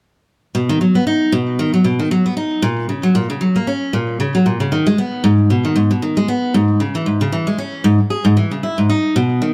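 Playful and pastoral, this folktronica excerpt moves at 115 BPM in B major with a light sixteenth-note swing. A lone picked steel-string acoustic guitar carries it from 0.5 to 9.5 seconds, its warm, auditorium-sized body sitting up front across a range from G#2 to G#4. A moderate small-room reverb gives the guitar a close, intimate air.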